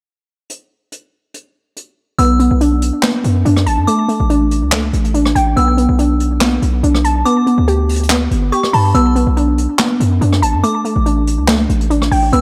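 A dark, hard-hitting trap-flavored hip hop cut, moving at 142 BPM in a half-time feel in B minor, taken from a longer piece. It opens with a brushed jazz drum kit alone at 0.5 seconds, its natural acoustic sound carrying handclaps, hi-hat, rim clicks and a medium-tuned snare in a small studio room. At 2.2 seconds the rest of the arrangement arrives over a cycle of Bm7, A7sus4 and Gadd9. An up-front, warbling, lo-fi pluck built from detuned triangle and sawtooth tones with a noise layer and a filter sweep plays arpeggios, colored by chorus and delay. A punchy, heavy 808-style sine bass with a fast attack and decaying tail sits prominently underneath, while a delicate, tinkling FM tine bell adds a high second line with chorus and delay. The mix is dark and warm with light reverb and a snug room ambience.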